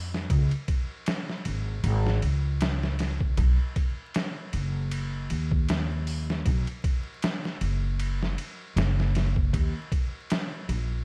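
Trip hop at 78 BPM with a lazy 16th-note swing, this smoky, hypnotic excerpt from a longer piece sets a woody, growly pizzicato upright bass up front, low in its range. A gritty, pitched-down sampler-style kit of thumpy kick, medium-tuned snare, hi-hat and ride sits beside it, compressed and tape-warm with the air of a large room. The dry, dark production carries a bed of vinyl crackle throughout the 11 seconds.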